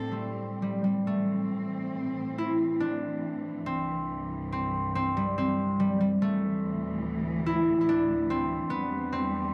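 Light reverb gives this fragment of a Celtic slow air a gentle sense of space, with a ringing, fingerpicked concert harp up front and a distant, bowed studio string section holding sustained chords beneath it. The mood is longing and mournful, in A minor at 70 BPM in 3/4, played rubato, as the harmony moves from Am7 through Am, C and Dsus2 to Em. From 1.1 seconds the harp carries a solo, while the strings keep a soft attack and add expressive vibrato and portamento.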